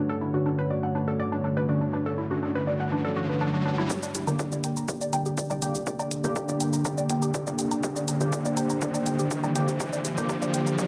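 This cinematic, driving melodic techno excerpt at 122 BPM opens on a dark, moody analog pad holding sustained chords over a Dmaj7, while a woody, wave-folded pluck spins arpeggios through lush chorus and analog delay. Edgy stabs from a sync-sweep polysynth with a nasal, full-bodied bite sit alongside, and a very quiet, warbling vintage drone hums underneath. Filter sweeps move across the pluck and pad, a riser enters at 1.8 seconds, and all three of the upper synths pump against the sidechain. At 3.9 seconds the harmony shifts to Gm and the build-up begins: a dry, punchy electronic kick, dry analog shaker, hi-hat and woodblock with delay on the percussion, and a tight sawtooth sequencer bass all come in as the polysynth's filter sweeps onward. Moderate spring reverb and heavy echo give the mix a deep, spacious feel.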